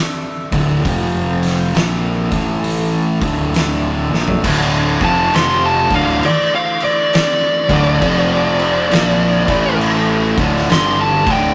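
Stoner and doom metal with a hypnotic, brooding mood, heard in a short cut from a longer piece, set to a slow swung groove. A mellow, round tonewheel organ with key click and a slow rotary speaker holds sustained chords in the background from the very start, and at 0.5 seconds two thick fuzz guitars enter with a picked riff, one warm and one dark, alongside a growly, punchy fingered bass driven through overdrive and fuzz. An oversized, low-tuned acoustic drum kit sits up front, with a fat snare, punchy kick, dark cymbals and toms in a bright stone room that pumps around it. After a drum fill, a bright, double-tracked overdriven electric guitar joins the riff at 4.4 seconds, and a compressed fuzz lead guitar steps forward at 5.0 seconds with a high, distorted solo melody. The whole take has the rough feel of a rehearsal-room recording, with tube saturation and light reverb.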